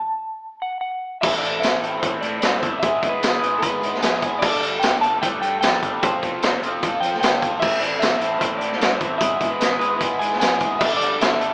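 Indie rock in A minor at 150 BPM in a straight 4/4, moody and cool, cut from a longer piece. A dark, clean semi-hollow electric guitar plays the melody alone for the opening 1.2 seconds, its fingered hollow-body tone carrying a slapback echo. At 1.2 seconds the full band enters: a bright, overdriven, double-tracked garage guitar sits up front with a phaser-tinged picked riff, while a fuzzy, overdriven fingered bass rumbles in the background. The small-room drum kit is saturated and gritty, with a punchy kick, a medium-tuned snare, hi-hat, crash cymbal and tambourine, and a rolled-off top end. The chords move from Am through E/G#, Gsus2 and Fadd9 before circling back. A moderate room reverb and a rough home-demo mix give the whole piece a small-speaker sound.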